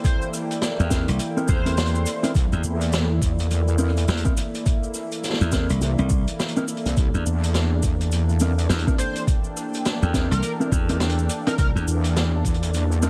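A heavy, saturated wobble bass with a detuned sawtooth growl arrives at 2.3 seconds and dominates this playful, funky glitch hop excerpt at 104 BPM, sharing the low end with a bright, punchy slap bass over a single C7#9 chord. A gritty, pitched-down kick sits up front, joined by a vintage acoustic kit with rolled-off top, hi-hat, rim click and snare, plus a grainy, close cabasa, all riding a swung 16th-note feel. A smooth analog pad and a moody, wave-folded ambient pad pump with the sidechain, a dark, clean electric guitar plays stabs with tape echo, and an edgy, tearing sync lead carries the melody in two brief phrases, all framed by small-room ambience and vinyl crackle.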